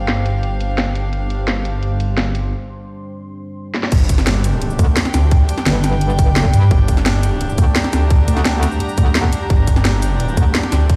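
Heard through a big sound system in a bare stone room, this aggressive, mechanical dark technical drum and bass excerpt in G minor at 172 BPM opens with a deep, moody pad glowing in the background, a thick, detuned saw bass pumping up front, bowed chamber strings with a reedy gut-string tone, and a cracking, overdriven kit of snare, bright hats, shaker and crash, then breaks at 2.5 seconds before the drop at 3.9 seconds brings in a tight electronic kick and, from 4.8 seconds, a metallic, FM wobble bass.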